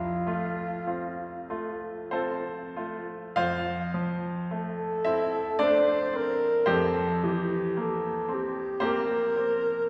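A rubato 3/4 pulse drifting between 46 and 57 BPM carries this tender, romantic classical passage in F major, cut from a longer piece, where a mellow, distant-sounding alto saxophone with light vibrato sings the melody over a bright, brilliant grand piano accompaniment with short sustain, both set up front in a wet, roomy church or concert hall reverb as the harmony shifts from F to C7/F at 6.7 seconds.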